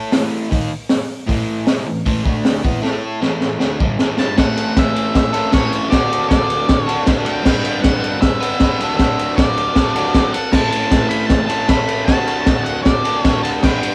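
A crunchy, bright overdriven guitar riff opens this swaggering, raw garage rock excerpt at 156 BPM in A mixolydian, joined at once by a punchy, gritty breakbeat drum kit with dark cymbals and a high-tuned snare that plays a fill from 2.8 seconds, before a dark octave-fuzz lead guitar enters at 4.2 seconds as the chords move through A, D, G and D/F#, all captured as a band playing live in one room with light reverb.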